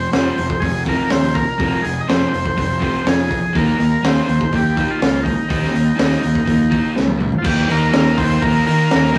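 Garage rock with a raw, gritty mood, this short cut from a longer piece is captured as a rough rehearsal-room recording with light reverb, moving from F minor to an Eb power chord. An up-front, buzzy vintage combo organ carries the melody with light vibrato over a double-tracked overdriven guitar riff sitting in the background and a growly, bright fuzz bass. A saturated breakbeat kit with a punchy kick, a high-tuned snare and dark cymbals plays a fill from 7.0 to 7.5 seconds, leading into a new section.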